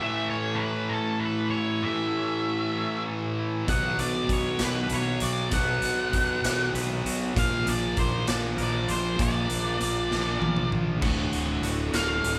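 Quiet-loud alternative rock in 6/8 at 65 BPM, this anthemic, cathartic fragment in D major is cut from a longer piece and moves through A, Bm and Bb before landing on D. From the start, a dark octave-fuzz lead guitar carries the melody over a double-tracked, compressed fuzz guitar riff that sits up front, while a clean, twangy electric guitar plays arpeggios in the background. At 3.7 seconds a growly, overdriven fingered bass and a raw garage drum kit join, the kit saturated and gritty with a punchy kick, a medium-tuned snare, a rolled-off top and a pumping stone-room sound. A drum fill at 10.1 seconds leads into a lead guitar solo at 11.0 seconds, where the harmony arrives on D. The band plays live together in one room, wrapped in a moderate large studio reverb.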